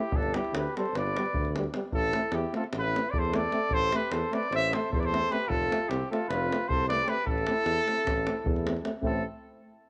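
A fiery, restless Balkan brass band fragment in 9/8 at 304 BPM opens with a mellow, up-front trumpet carrying the A minor melody over a punchy flugelhorn second line and a euphonium, joined at 0.1 seconds by a soft-attack tuba bass and a tight davul, with a very quiet French horn entering at 0.3 seconds, as the chords move from G through Am and F back to Am, all set in a roomy echo-chamber reverb.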